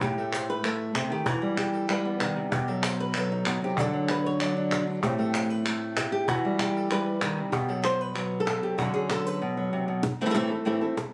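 Captured on a phone in a studio room with light reverb, this passionate, intense flamenco excerpt moves at 192 BPM in a straight 4/4. An up-front, fingerpicked acoustic guitar carries the melody from A2 to D5, its finger squeak audible over changes such as Am7, Em and B7, while a close, snappy cajon struck with hard hands rattles its snares beneath. Crisp, vintage-sounding, band-limited palmas hand claps drop out at 9.3 seconds, leaving guitar and cajon to land on an Am chord at 10.0 seconds.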